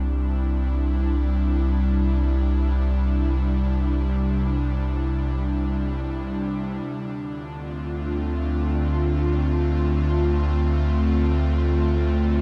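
Floating in free time, this serene, peaceful ambient fragment fades in on an airy, breathy synth pad with a soft, detuned vintage warble and chorus. The pad sits up front, sustaining chords that move from Cadd9 to Dm7 at 6.9 seconds over a deep, round sub bass. A huge reverb and dark production wrap the whole passage in a calm haze.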